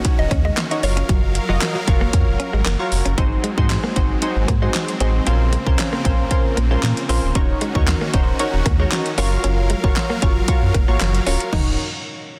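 A straight, driving feel comes from a punchy, up-front electronic pop kit of kick, fat snare, metallic hats, handclaps, toms and crash, with a deep sine-and-triangle sub bass entering at 0.2 s with sidechain pumping in this energetic dance-pop excerpt. A woody, round mallet-like FM pluck carries the melody through chorus, phaser and tape echo until 2.9 s, while glassy, wave-folded digital keys with a filter sweep play accompaniment. Huge, detuned supersaw chords pump alongside a clean, direct-recorded electric guitar riff bathed in lush chorus and set back in the mix, all in a dense, heavily limited modern master with light reverb.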